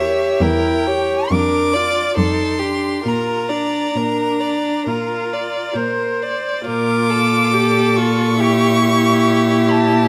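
A slow, tender classical string quartet movement in Bb major, heard in an excerpt from a longer piece, opens on a diminished chord with all four players together at 64-72 BPM in a rubato 4/4. The first violin sings a rich, focused melody with vibrato over the second violin's smooth, close line, a warm viola accompaniment and a clear, up-front cello bass, all bowed and set in a moderate scoring-stage reverb, with the music moving into a new section at 6.7 seconds.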